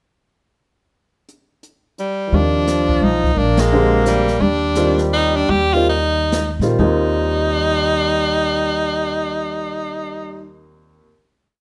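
A brushed jazz kit with dark cymbals opens at 1.3 seconds before an edgy, forceful tenor saxophone states a hook-based melody over a clear trombone guide-tone line, woody upright piano comping in drop2 voicings and a pizzicato upright bass in two-feel, a relaxed small-group swing piece in 3/4 and Eb major that accents together at 3.5 seconds, slows down, and settles on a final chord from 6.8 seconds in a moderate studio room.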